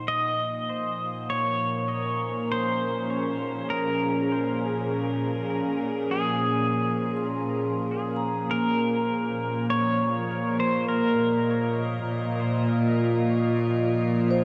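This spacious, reflective ambient excerpt in Bb minor at 50 BPM opens with an evolving, detuned wavetable pad holding chorused sustained chords up front alongside a clean, compressed electric pedal steel guitar that carries the melody with fingerpicked slide lines, volume swells and analog delay, while a calm organ-like drone hums in the background and a metallic, ringing vibraphone with slow motor vibrato and an earthy, distant bowed cello section on a low Bb both fade in across the full 14.4 seconds, the harmony shifting from Bbm9 to Ebsus2/Bb at 8.5 seconds in a dreamy, hall-reverb-soaked mix with a cassette tape character.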